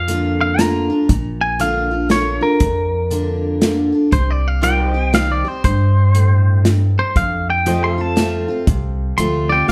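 A clean, twangy electric guitar solo leads this nostalgic, down-home honky-tonk piece in a swung 3/4 at 119 BPM in Bb major, over a full-bodied picked dreadnought acoustic guitar, a woody, thumpy pizzicato upright bass and a small-room country drum kit with a punchy kick, while a fingerpicked pedal steel guitar adds sustained background chords with volume swells and slide, the whole mix heard from further back in a wet studio reverb as the chords move from Bb to Cm to F.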